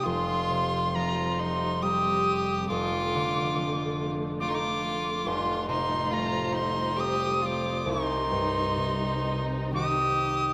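A reedy wooden whistle with a crisp chiff and vibrato carries the melody from the first moment, joined at once by an earthy, nasal solo fiddle on a second line, ringing fingerpicked concert harp and lush, bowed symphonic strings holding chords with portamento in the background. It is a haunting, longing Celtic slow air in 3/4, played with rubato and uneven beats, moving through Fsus2, Dm/F, Fadd9 and Cm. A long church reverb surrounds this short passage cut from a longer piece.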